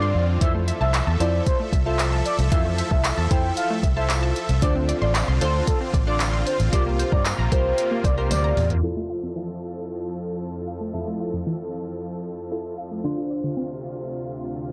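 A blown-out, overdriven mix with a low-pass filter and light reverb gives this dance-pop excerpt a hazy, saturated sheen, cut from a longer piece and moving at a straight 114 BPM in 4/4 with a bittersweet, driving mood. It opens on a drop where an expressive synth lead carries the melody, smooth and vibrato-tinged with chorus and delay. Underneath it sit glassy digital keys with chorus and a phaser, a lush detuned supersaw pad holding sustained chords, and a punchy unison pluck spinning arpeggios in the background through delay, all three pumping against the sidechain. A round, foam-muted vintage fingered electric bass sits up front beside a soft-kicked, tape-toned R&B drum kit of handclaps, dark hi-hats, kick and toms, while a jingly, close and dry tambourine adds shimmer behind them. A drum fill leads into a filter sweep at 8.8 seconds, where the lead, bass and drums stop and the keys, pad and pluck carry on over Fmaj7 and Dm7 harmony, the pluck dropping out at 13.7 seconds while the keys and pad continue until 14.7 seconds.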